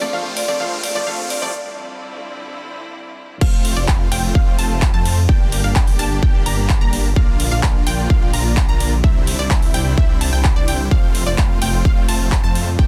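Uplifting and anthemic, this festival progressive house passage in F major moves at 128 BPM in a straight 4/4, cut from a longer track. It opens on a short build-up where an electronic riser, a ringing hard-mallet vibraphone melody and a bright baby grand piano, both set back and touched with tape echo, sound together until 1.5 s, over rich, bowed symphonic strings holding sustained chords in the background. The big-room dance kit comes in at 0.4 s with metallic hats, handclaps and crash cymbal. After a brief break, the drop arrives at 3.4 s as a punchy, up-front electronic kick joins, driving a progression that cycles from F through Gm, Bb and Cadd9. Throughout, a huge, thick compressed supersaw riff with vibrato, lush unison plucked arpeggios and a menacing, saturated detuned saw bass all pump against the sidechain, the supersaw and plucks trailing tape echo. The mix is dry and dense, with a heavily limited modern master.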